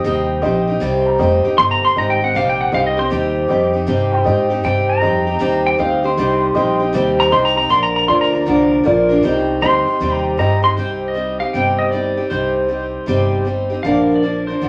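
Heartbroken, lonesome honky-tonk and classic country with a swung feel, where a twangy, up-front pedal steel guitar with fingerpicked slide and volume swells carries a solo melody until 10.8 seconds over a bright, squeaky picked archtop acoustic guitar, a growly, thumpy upright bass, and a dark, boxy grand piano that adds fills before dropping out at 10.7 seconds, all set in a wet studio reverb.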